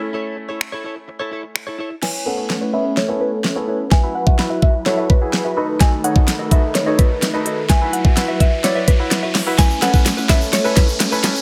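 A summery, euphoric dance-pop build-up cut from a longer piece, where a woody, round FM mallet pluck carries the melody through chorus and dub echo over bright grand piano chords with sidechain pumping and a clean, direct-recorded electric guitar riff, all three under a low-pass filter, while an up-front pop drum kit with a knocking kick, fat snare, crisp hats, finger snaps and crash enters at 0.6 s and launches a long drum fill and filter sweep at 2.0 s, joined by a warbling, detuned sawtooth pad, a background riser from 4.8 s and a grainy, distant tube shaker near the end, all in light digital reverb.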